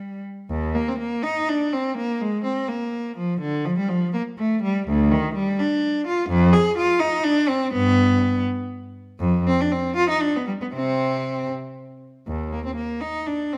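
In a 6/8 metre at roughly 76-85 beats per minute counted in dotted quarters, this baroque-style suite movement for unaccompanied cello moves with a free, rubato feel. The mood is solemn and grave, settling into C minor from 6.3 s. A single bowed cello carries everything from 0.0 to 13.6 s, ranging from D2 up to Ab4 with a clear, smooth and even tone coloured by vibrato. The instrument sits up front, surrounded by a moderate recital hall reverb that gives the sound a natural sense of space. Tuned slightly high at A4 = 442 Hz, this short passage is cut from a longer piece.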